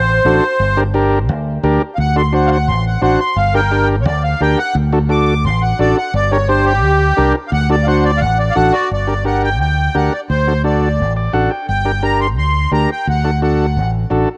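A reedy, sweet accordion with light tremolo tuning opens this fiery, passionate cumbia, taking a solo through 8.9 seconds up front over a bright, amped fingered electric bass, while a mellow, vintage combo organ with a cassette-tape tint slips in at 0.3 seconds. At a brisk 173 BPM in G harmonic minor, the harmony swings between Gm and D7, and the organ adds a short fill at 11.0 seconds in the closing section. This passage, cut from a longer piece, carries the intimate character of a home cassette recording, with light reverb and small-room ambience.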